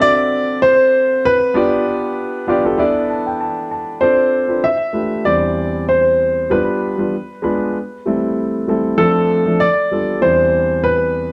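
Cinematic and silky, this short soul cut from a longer piece moves at 97 BPM with a light swing, as a clear, natural grand piano carries the up-front melody with a slapback echo over a second, warm grand piano accompaniment spanning the low to high register, a piano fill arriving at 2.2 seconds before the harmony turns to Dm7 at 4.0 seconds, all set in a dark production with light reverb.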